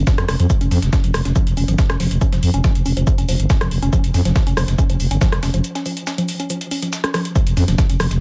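A digital ambience surrounds this short cut from a longer driving, industrial peak-time techno track, with the electronic kick and growling FM bass pushed up front. The kick is punchy and layered, re-recorded in a small room, and the bass is thick and sustained, sitting low with sidechain pumping that makes it breathe around each beat. Over it, a woody wave-folded pluck carries the riff with a dark, percussive edge, a moving notch, chorus and delay, and it pumps in the same sidechained way. Two drum kits fill out the top. A gritty, compressed sampler-style kit supplies hi-hat, shaker and a medium-tuned snare, all high-passed, while a techno kit adds metallic hats and a rim click. A break arrives at 5.6 seconds and runs until 7.4 seconds before the groove closes out the 8.2-second piece.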